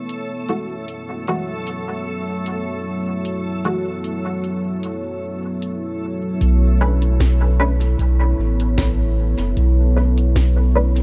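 A round, up-front sine sub bass with tube saturation arrives at 6.4 s alongside a deep, very quiet analog kick, shifting this meditative, hazy ambient dub piece at 76 BPM (4/4, light 16th swing) from F#m9 to Bm9. Underneath throughout, a dark, detuned sawtooth pad holds slow-attack chords with chorus and reverb, while a reversed, bright granular texture swells dreamily until the change. Muted, filter-plucked chord stabs with ensemble chorus and dub echo sit over an overdriven electronic kit of woody snare and smooth hi-hats, also sent to dub echo, all in a fairly dry room.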